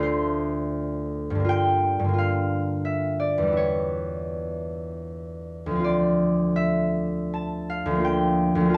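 Classical solo harp music sets a serene, peaceful mood in a short excerpt cut from a longer piece. The tempo drifts between 74 and 90 BPM in 3/4 time, with a rubato feel that lets the phrases breathe. A concert harp plays alone throughout, fingerpicked and sitting up front, its bright, ringing acoustic tone spanning D2 to A5. The harmony moves from Dm7 through Gm9 and Em6, returns to Dm7, and settles on Bbmaj7/D at 8.1 seconds. Light reverb surrounds the instrument within a dark, warm production.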